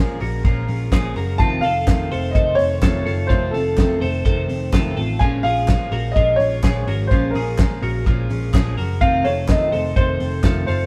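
A woody, slightly detuned upright piano carries the melody from the first moment of this restless, wistful jangly indie pop excerpt in Bb minor at 126 BPM, over a full-bodied fingerpicked steel-string acoustic guitar, a bright, twangy twelve-string electric guitar playing phaser-tinged arpeggios, and a round, foam-muted picked electric bass, while a cloth-damped, thuddy drum kit with a fat snare and dark cymbals sits up front from 0.2 seconds, hollow group handclaps linger in the background, and the band plays live in a moderate stone room as the harmony moves between Bbm7 and F7.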